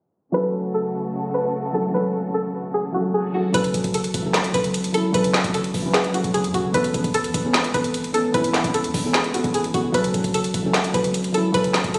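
This dark, melancholic hip hop excerpt in the trap style moves at 150 BPM in 4/4 with a half-time feel, in F# minor, with chords shifting from F#m to Aadd9 and back. From the start, a twangy, string-like resonator pluck carries the melody, colored by chorus, a low-pass filter and tape echo. A soft, felt-muted upright piano plays up front with audible action noise, and a smooth, bowed studio string section holds vibrato-laden chords while a filter sweep runs through the opening until 3.5 seconds. At that point the strings drop out and the trap drum kit arrives with a woody snare, metallic hi-hats and handclaps carrying vintage 12-bit sampler grit, joined by a punchy, tight 808-style bass with a fast attack and a decaying tail. The whole track sounds as if captured on a phone in the room, with light studio reverb and a low-pass filter dulling the top, and it plays through to 12.0 seconds.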